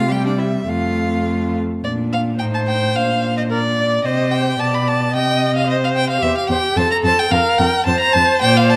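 Graceful and lively, this short passage from a quick classical-period movement for string quartet moves at 109 BPM in a straight 2/4, tuned to A4 = 438 Hz. All four players bow with vibrato for the full 8.8 seconds. The melody belongs to a clear, smooth first violin that sits in the background, while a second violin with a focused, up-front tone carries a second line reaching up to B5. Beneath them, the close viola adds expressive accompaniment with a soft attack and portamento, and a rich, even cello anchors the bass up front between E2 and C3. The harmony opens on C and F, then moves at 1.8 s into a longer passage through Bb, Am7b5, Cm and G/B before coming back to C and F, all heard in a moderate recital hall reverb.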